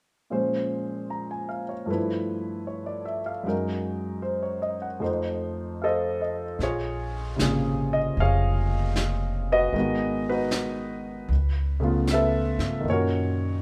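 Swinging gently at 77 BPM in 4/4, this melancholic, smoky jazz ballad in Bb minor opens with an intimate, up-front concert grand piano alone, its action noise audible and its low end deep, before a woody, thumpy pizzicato upright bass and a dark, smooth brushed drum kit with a rolled-off top join at 6.6 seconds under light reverb, all in an excerpt cut from a longer piece.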